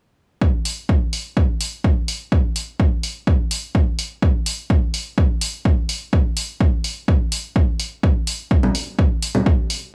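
A punchy, overdriven electronic kick drum opens this driving, hypnotic melodic techno excerpt at 126 BPM in a straight 4/4, joined at 0.7 seconds by layered, overdriven electronic hi-hat and congas that carry a small-room character, both parts sitting up front in a dry, close mix.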